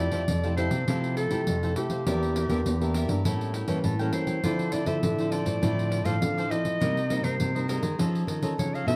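Samba and choro with a sunny, playful mood: a breathy, jazz-style clarinet sings the solo melody with vibrato, scooped notes and plate reverb over a crisp, bright, picked cavaquinho, an up-front, full-bodied, fingerpicked nylon-string guitar, a second nylon-string guitar thumb-plucking the bass line with audible finger squeak, and a jingly pandeiro played with soft hands, set in a dark, warm production with moderate studio reverb.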